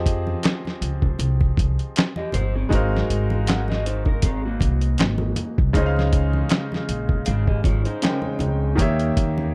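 A gritty, tape-warm sampler-style drum kit with a thumpy kick, medium-tuned snare, handclaps and hi-hat sits up front alongside a woody, gut-strung pizzicato upright bass in this sultry, smooth neo-soul R&B excerpt at 79 BPM in F minor with a swung 16th feel, while a bright, brilliant grand piano carries the chords from Fm9 through Ab13 and Dbmaj9 to Eb7b9, low-tuned ringing congas sit in the background, and a dark, slightly broken-up electric guitar with lush chorus adds a second line from 2.2 to 8.8 seconds, all within a dark production and light reverb.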